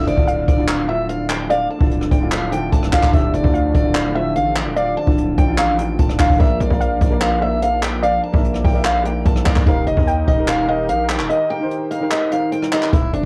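Menacing, eerie half-time trap cut from a longer piece, led by a boxy, picked steel-string acoustic guitar melody over a filtered grand piano with audible action noise and a smooth, detuned analog pad with chorus sitting in the background. An up-front jazz brush kit brings a boomy kick, hi-hat, rim clicks and handclaps in a natural small room, while a heavy, aggressive 808-style bass adds saturated weight beneath the Dmadd9, Bb and Eb chords. A warbling, dusty pluck with tape echo and chorus threads a dark, lo-fi second line until 11.7 s, a break arrives at 11.3 s, and the whole recording carries the character of a home cassette.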